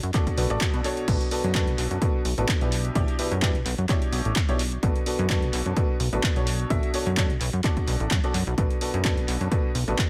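A dry, echo-heavy mix opens this energetic, soulful piano house excerpt, where a tape-warm electronic kick and a punchy analog drum machine of crash cymbal, handclaps and hi-hat, trailed by analog delay, drive a lightly swung 16th-note groove beneath a funky, up-front sawtooth-and-square bass pluck that pumps to the sidechain, while a bright, woody, slightly detuned upright piano riff, also pumping and trailed by analog delay, moves through Dmaj7, Bm7 and Em7/B colours from 0.1 seconds to the close.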